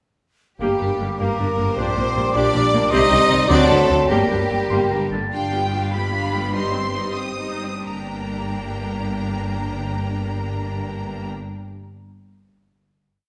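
In a rubato 6/8, with the dotted-quarter pulse moving between 85 and 106 BPM, this urgent, dramatic G minor movement for symphony orchestra sets a distant, intense violin section on the melody, doubled at the octave by a pure, hollow flute. A bright, close second violin section and a focused viola section rock through two-note figures over a bowed bass ostinato in the cellos and double basses, while a clear oboe, a mellow bassoon and a French horn section add chords in the rhythm of the tune until the winds and horns drop out by 5.3 seconds. The tempo slows from 4.7 seconds through a brief coda into a held G minor chord at 7.8 seconds, all ringing in a reverberant recital hall.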